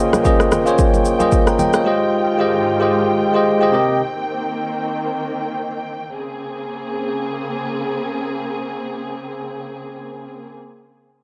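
Amapiano at 112 BPM in Bb dorian with a late-night, deep mood, this short excerpt opens with a bright, bell-like tine electric piano and a punchy deep house kit of kick, rim click and shaker over thick-skinned congas in the background, the drums dropping out by 1.8 s and the piano by 4.0 s, leaving a veiled, con sordino string section with vibrato and sidechain pumping to sustain chords from Bbm9 through Fm9/Ab and Cm7 until 10.5 s, all carrying the light reverb and cassette grain of a home tape recording.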